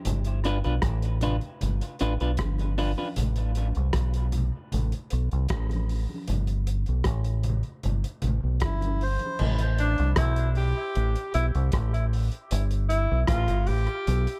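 A straight 4/4 pulse at 77 BPM anchors this spacious, deep dub reggae excerpt in A minor, built on a round, up-front fingered electric bass sitting in the low register and a vintage acoustic drum kit with a punchy kick, rim clicks, hi-hat and dusky crash cymbals in a small, rolled-off room sound. Bright, thin-skinned congas sit distant in the background with soft hands and dub echo. Over an opening G7 chord, a compressed, slightly broken-up picked electric guitar enters at 0.5 s for a brief, echoing figure before the harmony drops away. A reedy, breathy, nasal melodica offers a short dub-echoed phrase at 8.6 s, and from 9.8 s a warm tenor saxophone with light vibrato and a roomy tone carries a second line as the chords move through A7(no3) to G. The mix keeps reverb to a minimum and leans heavily on echo, leaving plenty of air around each part.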